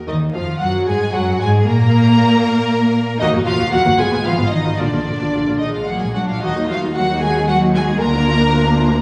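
A clear, intense violin section opens on a second line at 0.0 seconds, joined at 0.1 seconds by a focused violin melody, an expressive viola accompaniment, a cello section set in the background and a lush, up-front double bass section, every part bowed with vibrato, in a stormy, dramatic excerpt from a quick classical-period movement for string orchestra in a rubato 6/8, heard in a reverberant recital hall with vinyl crackle.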